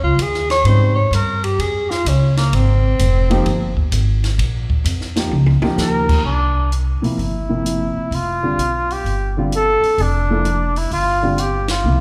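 Intense yet cool modal jazz swinging at 129 BPM over Eb13sus4 and C9sus4 harmonies in a reverberant hall, where a mellow, vibrato-laden tenor saxophone solos up front until 3.9 seconds above a woody, thumpy gut-string upright bass played pizzicato, dark baby grand piano comping, and a dry compact cocktail kit with a high-tuned snare and punchy kick that plays a fill at 5.3 seconds before a roomy, distant trumpet takes the melody from 5.8 seconds through a closing band accent.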